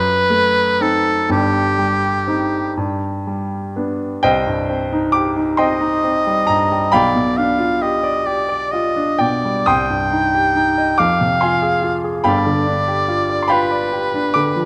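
A clear, close-miked oboe sings the melody in a classical style, its vibrato up front and carrying a solemn, melancholic mood through this excerpt from a longer romantic duo. A warm baby grand piano accompanies throughout, its natural tone and short sustain sitting just as far forward as the oboe. The music moves in 6/8 with a flexible, rubato feel. The harmony opens on a diminished seventh chord before settling onto C minor over G and then G, and a new passage begins at 4.2 seconds that moves through Fm and G7. The close, detailed microphones capture both instruments in a moderate scoring-stage reverb that lends a gentle sense of space.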